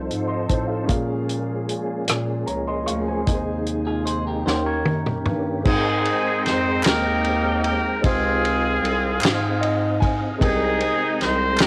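Jubilant and soulful, this slow gospel excerpt moves in a straight 6/8 at 50 BPM in Ab major, sounding like a home recording on cassette with light reverb. A woody upright piano and a clean tonewheel organ, turning through a slow rotary speaker with chorus vibrato, carry the harmony from F7 and Bbm7 toward Eb7. Beneath them a mellow bass clarinet with light vibrato holds the low end, while a fat-snared soul drum kit sits up front with a tight kick and rolled-off top, adding a fill from 4.5 to 5.7 seconds. A twangy, scooped electric guitar offers a brief second line just before a vintage horn section, clear and softly attacked, takes the melody at 5.7 seconds over lush Abmaj9 and Dbmaj9 chords. Crisp group handclaps join in the background from 6.8 seconds, and the piano slips in a fill near the close.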